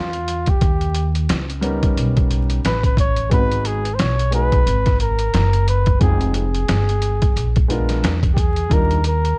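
A swung sixteenth-note groove of gritty, overdriven sampler-style drums with a thumpy kick and medium-tuned snare drives this mellow, smoky jazz-hop fragment, as woody pizzicato upright bass sits up front, a dark, vintage grand piano with long sustain enters at 1.6 seconds, and a breathy flugelhorn with vibrato carries the solo melody over jazz chords, framed by small-room ambience and vinyl crackle.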